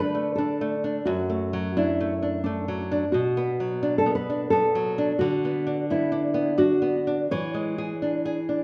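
Heard from the start, this serene, warm romantic duo in 86 BPM waltz time with rubato pairs an up-front, fresh-stringed, thumb-plucked nylon-string guitar carrying the melody with a second, dark and small-sounding fingerpicked nylon-string guitar whose finger squeaks show through the accompaniment, both sounding in a moderate concert hall reverb as the passage, cut from a longer piece, moves from D5 through D/F# and Bm to Bm/D before arriving on E7 at 7.3 seconds.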